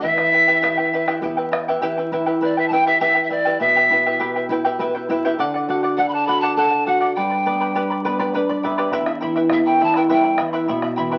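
An airy, wooden pan flute with breathy chiff leads this earthy, wistful Andean folk fragment in E minor at 101 BPM in 3/4, over a shimmering double-strung fingerpicked charango and a boxy flamenco guitar with audible finger squeak and brief fills, while a round bombo sounds until 1.7 seconds and returns at 8.9 seconds, the harmony moving through Em, D and G inside a small reverberant room and the crackle of a very old 78 rpm record.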